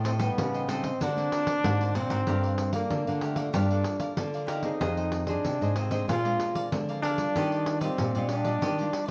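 Samba and choro in G minor at 95 BPM in a straight 4/4, this lively, bittersweet excerpt is cut from a longer piece and runs just over nine seconds. A clear, punchy trombone carries the melody up front in a forceful jazz-style solo with vibrato, sitting in its middle range. Beneath it, a thumb-plucked nylon-string guitar with fresh strings plays the bass line, also up front, while a second, full-bodied nylon-string guitar fingerpicks an accompaniment in the background, its finger squeaks audible. A bright, crisp picked cavaquinho adds accompaniment higher up, and a jingly pandeiro keeps the percussion in a small-room sound. The harmony moves from Am7b5 and Daug7 into a passage at 2.3 seconds that passes through Gm9, Fm7, Bb9 and Ebmaj9, all set in light reverb.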